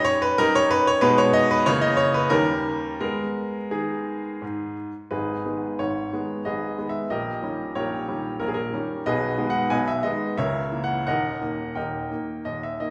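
A solo baby grand piano opens on a D#7 chord and turns to G# minor by 3.0 seconds, setting a dramatic yet elegant tone for this classical-period sonatina in 3/4. The tempo moves between 84 and 94 BPM with a rubato feel, the phrasing breathing freely within the triple metre. Spanning from a deep D#1 up to G#5, the piano sits up front with a clear, intimate and natural character, its long sustain and audible action noise bringing the listener close to the instrument. A wet recital hall reverb of about 1.3 seconds surrounds it with the resonance of a church or concert hall. The opening section returns at 5.1 seconds, retracing its harmony through G#m/B and A#dim/C# before arriving on a D# chord near the close of this passage, which is cut from a longer piece.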